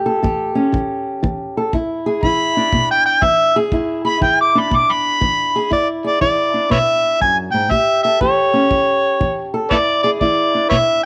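Laid-back and gritty, this swung acoustic country blues fragment opens on a dark, boxy fingerpicked parlour guitar up front, with a tight acoustic kick drum played with brushes keeping time beneath it over A7 and E7 changes. At 2.2 seconds an amplified, overdriven harmonica enters loud and up front, taking a jazz-style solo through the first section with light vibrato, tongue slaps and scooped notes. A small room ambience surrounds the parts.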